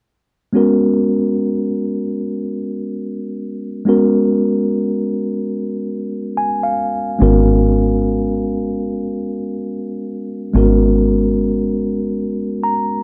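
Soulful and sultry, this short neo-soul and R&B excerpt moves at an unhurried 72 BPM in 4/4 with a swung sixteenth-note feel, sitting in G# minor. A mellow tine electric piano carries the accompaniment from the start at 0.5 seconds, its clean, up-front tone resting on a G#m11 chord and adding short fills around 6.0 and 12.2 seconds. At 7.2 seconds a deep dub fingered electric bass enters, dark, round and foam-muted, holding low on G#1 beneath the keys. Both parts sit close and present in a dry, intimate recording with a 1970s studio character and little reverb. The fragment ends at 13.0 seconds, cut from a longer piece.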